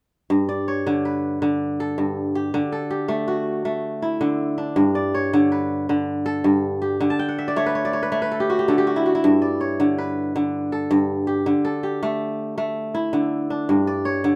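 A lone kora opens with ringing, crisp fingerpicked arpeggios, spanning G2 to A5 in this flowing, joyful West African traditional fragment, set at 108 BPM in a straight 12/8 and G lydian. Upfront in a light reverb, it moves between G and D chords and adds a fill from 7.1 to 9.2 seconds before settling back on G.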